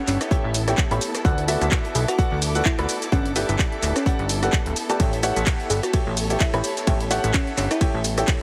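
Uplifting and feel-good, this short piano house excerpt rides a swung groove, with a clear, slightly worn grand piano riff carrying echo and sidechain pumping over A7, D6 and Gmaj9 chords, while a distant, bowed string section with vibrato and portamento pumps softly in the background. A bell-like FM electric piano adds a sparkling melody through chorus, phaser, vintage 12-bit sampler grit and dub echo, and a plucky, detuned analog bass sits up front. A punchy electronic kick enters at 0.3 seconds, joining an analog drum machine of handclaps, hi-hat, ride, rim click and shaker over a very quiet, warm soul kit, all in a small room with a heavily compressed, radio-like sound.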